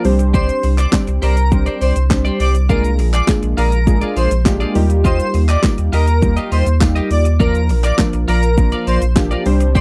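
A dry, close 1970s-style studio sound frames this summery, euphoric dance-pop excerpt, where a punchy, cracking house drum kit and a deep, round sine sub bass drive sidechain-pumped, detuned sawtooth analog keys, a twangy, bright twelve-string electric guitar riff with lush chorus, an airy, dreamy lead melody with vibrato and slapback echo entering at 0.3 seconds, and a very quiet, jingly tambourine.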